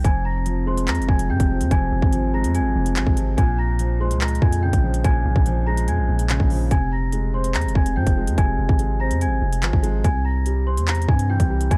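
Drill hip hop with a half-time feel, this ominous excerpt is cut from a longer piece and lasts 11.8 seconds. A large celesta carries the high melody with a bell-like, delicate, sweet ringing tone, softened by a low-pass filter and trailed by digital delay, sitting back in the mix. Beneath it, a dark baby grand piano plays low accompaniment with a mellow, long-sustaining sound that is also low-pass filtered. Up front, a deep sine 808-style bass with a fast attack and decaying tail anchors the harmony as it moves from Fm to Bbm7, back to Fm, and onto C. The electronic drill kit pairs a hard-clipped kick and crisp hi-hats with handclaps, all pushed forward in a dry, warm production.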